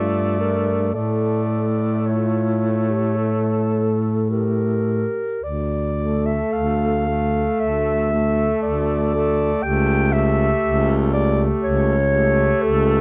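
Classical and lyrical, this short excerpt for a single-reed quartet moves with a yearning, solemn rubato in a slow four, its chords shifting between minor and dominant harmonies. Up front, a warm clarinet carries the melody while a mellow, softly attacked alto saxophone with light vibrato shapes a smooth second line, and a vintage-toned tenor saxophone with vibrato keeps to a single note of accompaniment. The clear baritone saxophone anchors the bass prominently with vibrato, all four playing together for the full 13 seconds under light reverb in a dark production.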